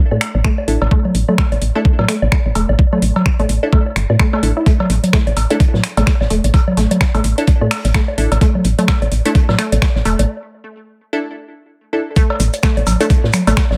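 An overdriven, knocking electronic kick drives this cool, clinical minimal techno excerpt at 128 BPM with swung 16ths, alongside a round, dark FM bass pumping beneath, a squelchy, resonant blip pluck riff with chorus and digital delay under a filter sweep, crisp detuned wavetable chord stabs through tape echo, tape-warm woodblock, cowbell and congas, and a garage kit of finger snaps and metallic hats, while a gritty, rolled-off indie kit of hi-hat and snare slips into the background from 4.7 seconds, and after a break at 10.3 seconds the drop at 12.2 seconds brings in a grainy, vintage tube shaker, all in a dry space.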